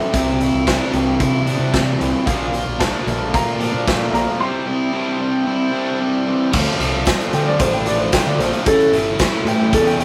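A straight 4/4 pulse at 113 BPM drives this bittersweet, moody indie rock excerpt in D minor, where a punchy, gritty garage drum kit and a round fuzz fingered electric bass support a woody upright piano melody and picked riffs from an overdriven electric guitar and a compressed fuzz guitar in the background; a clean tonewheel organ with slow rotary speaker holds sustained chords from 2.3 to 6.5 seconds, the piano takes a solo from 6.5 seconds, a jingly tambourine is barely audible late on, and the rough rehearsal-room recording sits in a moderate stone room reverb.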